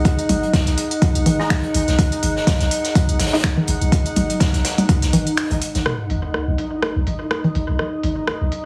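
A swung 4/4 groove of soft, tape-warm electronic kick, a smooth-hatted techno kit with finger snaps, an airy street-band kit of hi-hat and snare, and a booming analog drum machine of congas, rim clicks and toms through tape echo drives this sparse, hypnotic minimal techno cut, over a deep, punchy sine sub bass that pumps to the sidechain. A muted, detuned dub chord stab with phaser, chorus and tape echo arrives at 1.4 seconds, floating among a bubbling, resonant stepped-filter texture and a nostalgic, lo-fi, warbling pad, both chorused and pumping. The kick drops out at 5.0 seconds, and after a brief break, a sub drop lands at 5.9 seconds as the street-band kit falls away, all under a heavily compressed, radio-like sound in a small room.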